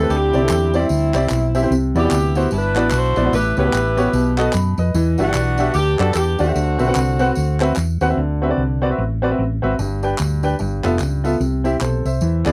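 A clear, jazz-style saxophone section with light vibrato carries the hopeful melody up front until 7.7 seconds, over an uptempo gospel groove at 149 BPM in 4/4 with a swung eighth-note feel. A baby grand piano sits close in the mix with rich chords like D9sus4, Cmaj9#11 and A13, while a dark, round and punchy hollow-body electric bass anchors the low end, and tambourine with group handclaps keeps a quieter acoustic pulse. The dry, close 1970s-style studio sound keeps this uplifting cut-out of a longer piece intimate as it moves through G13 toward C at the end.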